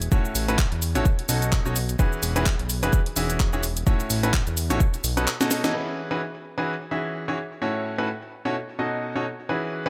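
This euphoric, joyful piano house excerpt opens with a thick, detuned sawtooth bass pulsing under sidechain pumping and tube saturation alongside a house kit of handclaps, hi-hat, shaker and a cracking snare, joined almost at once by a punchy, tape-toned electronic kick, all placed up front. The drum kit's percussion, hats and snare sit behind low-pass filtering, and the kit sounds re-recorded in a large room. A bright upright piano carries the riff from 0.1 seconds through to the end, its woody, brilliant tone and short sustain framed by delay and its own sidechain pumping, cycling through A6, B9 and E69 chords in E major. At 128 BPM in 4/4 with a swung sixteenth-note feel, the groove drives forward until a drum fill and a band accent mark the turn into the second section at 5.7 seconds. From there the piano plays alone over light reverb, its polished, present sound holding the harmony through to 9.9 seconds.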